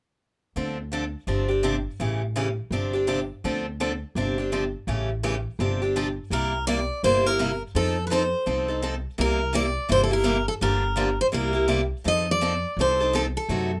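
A bright, boxy parlour guitar steps up front with the melody at 6.3 seconds, its finger squeaks audible, over a full-bodied jumbo guitar that has been picking out accompaniment since the opening alongside a woody, thumpy pizzicato upright bass. This is a swinging, playful stretch of acoustic string swing in the gypsy-jazz manner, cut from a longer piece, moving from a cycling Dm7, G7sus4 and A7 passage into a section built on C7 and F7. The light reverb and rough home-demo mix give it a casual, close-up feel.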